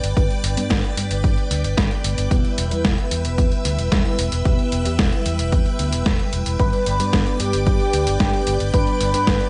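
A sunny, playful italo disco fragment at 112 BPM in G major opens with lush string-machine chords, glossy chorused polysynth stabs carrying a filter sweep, a bright envelope-filtered fingered bass, and a gritty, overdriven sampler-style hi-hat and snare with gated reverb, joined at 0.2 s by a punchy, tape-warm electronic kick. The harmony moves from G to E minor and back to G, and at 6.6 s a thick, nasal unison lead with vibrato, subtle chorus and tape echo takes the melody. The mix sits in light reverb with a softened top end.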